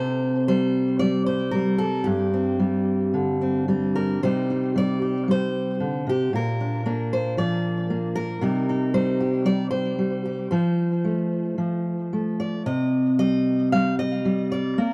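A bright, full-bodied fingerpicked steel-string acoustic guitar with fresh strings and a touch of tape echo plays alone and up front across this melancholic, haunting folk fragment, cut from a longer piece at 114 BPM in 4/4 with a rubato feel, ranging from G2 to F5 and moving from an opening on C5 and G5 into a darker stretch from 4.2 seconds that circles Cm, Bb and F, all captured in a dry, close 1970s-style studio sound tuned to A4 = 435 Hz.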